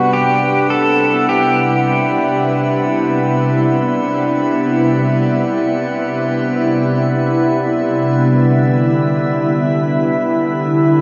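A bright, detuned organ-like pad sits up front in this luminous, peaceful ambient excerpt in free time, holding sustained chords that move from Cmaj7 to Em7 at 8.2 seconds. A clean, twangy pedal steel guitar plays a brief slide melody through dub echo until 7.0 seconds, while a drifting glassy texture of sine overtones hovers alongside a reedy hand-pumped harmonium drone that is barely audible. The echo-heavy mix is bathed in a wet spring reverb with a touch of small-room ambience.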